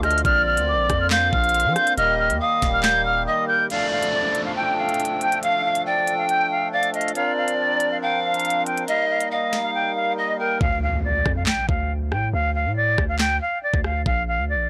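Drill hip hop at 139 BPM with a half-time feel in D phrygian, this menacing, dark excerpt is cut from a longer piece and built on a dry, gritty hardware sound with transformer saturation. An up-front jazz flute carries the melody across a range from D5 to G6 through a low-pass filter, its airy metal tone marked by vibrato and a soft, expressive attack. Beneath it, a breathy bamboo pan flute with chiff and rolled-off highs plays a second line through analog delay, while a close-miked, nasal hand-pumped harmonium holds sustained chords moving from Bbadd9 to Eb and Dm; both drop out at 10.6 seconds. The electronic drill kit pairs a knocking kick with a sharp snare, crisp hats, handclaps and rim clicks, pausing briefly before the sections turn, and its hi-hats fall silent from 10.6 seconds onward. A deep sine 808-style bass with a fast attack and a decaying tail sounds at the start and returns at 10.6 seconds, joined by an electronic impact there after an earlier downlifter in the middle passage.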